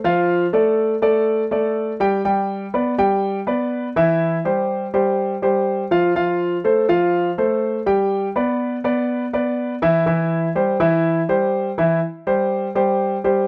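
A concert grand piano carries this short solo passage on its own, sounding warm and natural with a deep bass and an up-front presence. The piece is a sunny, danceable Latin number in C major, moving at 123 BPM in a straight 4/4 feel, and the piano is tuned slightly sharp, to A4 = 441 Hz. Its part spans E3 to G5 as it works through a progression of Dm, G, C, F, G and C, arriving on a C5 chord at 12.0 seconds. A moderate studio reverb gives the instrument a modest sense of room around it. The clip is cut from a longer piece and runs 13.5 seconds, with the opening theme returning briefly at its close.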